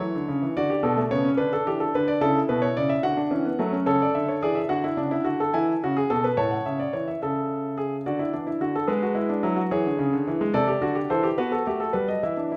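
Classical, baroque-style three-part fugue for solo grand piano in D major, lively yet stately, moving in a straight 6/8 at 72 BPM counted in dotted quarters and spanning A2 to A5. The piano sits up front with a clear, intimate, natural tone, its action noise audible beneath the notes, all bathed in a wet recital-hall reverb. After an opening section rooted firmly around D and A, the second half from 7.2 s drifts through C#m and Am/C to settle on B7 at 11.4 s, where this fragment of a longer piece breaks off.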